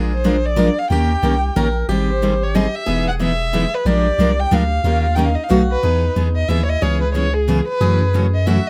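Acoustic string swing in the jazz manouche tradition, this lively, swinging waltz-time excerpt features a warm, bowed violin carrying the melody up front with vibrato and expressive portamento, over a deep, punchy sub bass. Two full-bodied steel-string acoustic guitars provide picked accompaniment, one showing finger squeak and the other sitting in the background, while a boxy swing-style guitar plays a quiet second line. Close, detailed microphones and light reverb capture the bright, fresh-stringed sound as the harmony moves from Bb7 into a second section beginning on Emaj7 at 5.8 seconds.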